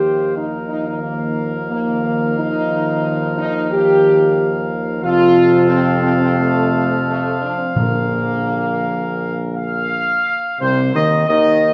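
Majestic and solemn, this classical brass excerpt sets a dark, soft-edged trumpet section up front on the melody over mellow French horns with light vibrato and smooth-topped trombones holding sustained chords, all moving from Ebadd9 through F and Bb to a rootless Ab. A clear, vintage-toned tuba carries the bass, and timpani struck with medium mallets on calf heads sound briefly from 7.8 to 8.8 seconds. The ensemble sits in a moderate recital hall reverb that lends the horns and trumpets a distant, roomy glow.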